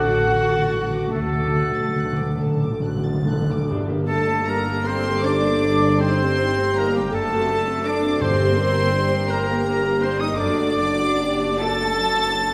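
A lilting 6/8 pulse, stretched and pulled by rubato, carries this slow, elegiac movement for symphony orchestra, cut from a longer piece. High in their range, the violin section sings a yearning melody with a soft, floating, pure tone drawn sul tasto. A darker, intimate second violin line and a vintage-toned solo oboe lie beneath it, while the woody, lush violas murmur a vibrato accompaniment in the background. A distant, roomy French horn section holds sustained chords, and a rich cello section and a gentle double bass section ground the harmony from below. Round, soft-mallet timpani open with a fill through the first 3.7 seconds and fall silent at 9.3 seconds, leaving the strings, winds and horns to bloom in the hall's long, wet reverberation.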